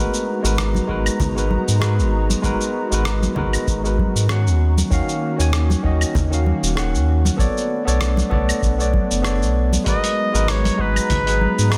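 Sunset chillout at 97 BPM with a relaxed, warm mood and a lightly swung sixteenth feel, built on a round, up-front sub bass with tube saturation, a barky tine electric piano through tape echo, and a soft, breathy chorused pad drifting behind, while a gritty, sampler-style soul kit of claves, hi-hat, rim click and shaker is soon joined by ringing background congas and a deep, overdriven electronic kick, moving through G#m9, D#m9 and Bm9 chords until a clear, close-miked flugelhorn with vibrato takes a solo at 9.9 s in this dense, heavily limited excerpt.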